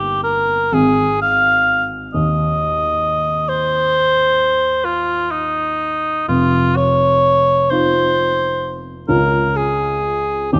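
Close, detailed microphones and a moderate concert hall reverb frame this brief, lyrical and serene romantic classical excerpt for cor anglais and grand piano. In a slow, rubato 12/8 in A-flat major at about 40-44 dotted-quarter beats per minute, a mellow cor anglais with a smooth top sings the melody up front, while a dark, natural-sounding grand piano with short sustain, also up front, accompanies from its lower register. The harmony opens on Eb/G and settles on Ab at 0.7 seconds, later touching F5 and Db6 chords within the 10.6-second passage.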